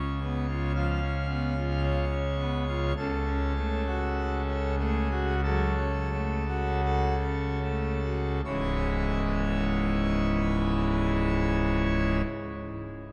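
Grave and solemn, this classical chorale-style passage for pipe organ unfolds in C# minor at a slow, rubato pace of roughly 36 to 57 BPM in 4/4, and it is cut from a longer piece. The full organ plays solo, up front in the mix, with mixtures drawn for a majestic, brilliant sound and a romantic voicing that spans from deep C#1 up to E#5. The opening phrase slows as it moves from a C#7 chord to F#m over a C# bass. At 8.4 seconds it settles into a new section on C# minor, and the organ sounds until 12.2 seconds. A long cathedral reverb of 4.8 seconds lets the final chord hang in the air, and the production has a dark, warm character.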